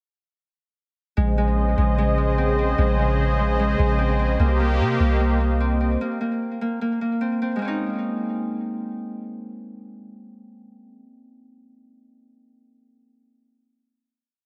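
At 1.2 seconds a warm, detuned sawtooth pad, a soft round 808-style bass and a mellow, fingerpicked Celtic harp all enter together on a Bbm11 chord, setting a melancholic, ethereal mood for this short hip hop piece in Bb dorian. The tempo is 149 BPM in 4/4, felt at half-time, and the tuning sits slightly low at A4 = 435 Hz. The pad holds smooth, sustained chords with chorus and tremolo, while the dark, sine-like bass lays down long sub-bass notes with pitch slides beneath it. The harmony shifts to Cm7 at 4.4 seconds, and at 6.0 seconds the pad and bass drop out. The harp carries on alone, returning to Bbm11 at 7.6 seconds, its ringing arpeggio pattern in eighths repeating like a sampled loop through a delay until it stops at 11.0 seconds. Light reverb and a small room ambience give the close, up-front parts a gentle sense of space.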